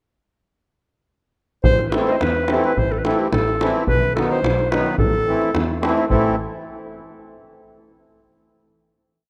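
A clear, soft-attacked clarinet opens at 1.6 seconds with a bittersweet, virtuosic melody built from short motifs, joined at once by a bright, bowed double bass marking root and fifth on the main beats and a deep, distant davul playing a two-stick pattern in a large room. At 1.9 seconds a reedy, sweet accordion with light tremolo tuning adds close-voiced off-beat chords, giving this brisk Balkan wedding-band piece in 2/4 its straight, dancing lilt. Plate reverb and a rough home-demo mix frame the short piece, which settles on a final chord from 6.1 seconds.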